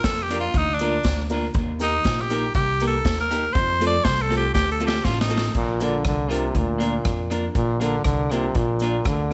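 Cheerful and bouncy, this ska excerpt in Bb major moves at 120 BPM in a straight 4/4. It opens with a raspy, gritty tenor saxophone solo up front, full of vibrato and scooped notes, and after a drum fill a brilliant, close-miked trombone takes over the melody at 5.6 seconds. Underneath, a growly pizzicato upright bass and a polished street-band drum kit with a boomy kick, rim clicks and tape echo drive the tune. A twangy clean electric guitar with its own tape echo and a dark, boxy upright piano playing stabs sit in the background, while a grainy cabasa ticks along very quietly, all set in light studio reverb.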